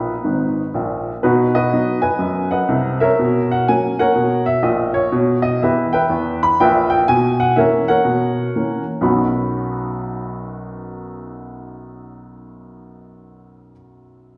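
A clear, woody upright piano plays alone in this swinging, exuberant stride jazz fragment, cut from a longer piece. It opens with a short fill that runs to 1.2 seconds, then settles into a swung groove that reaches from deep bass notes up into the bright upper register. The harmony stays anchored on B, moving through F#/B, Em/B and F#7/B before returning home around 9.0 seconds. The instrument sounds polished and present, sitting up front in the mix. A recital-hall reverb in what sounds like a church or concert hall wraps the playing in a lingering ambience, and the gently rolled-off top end gives the recording a soft, rounded glow.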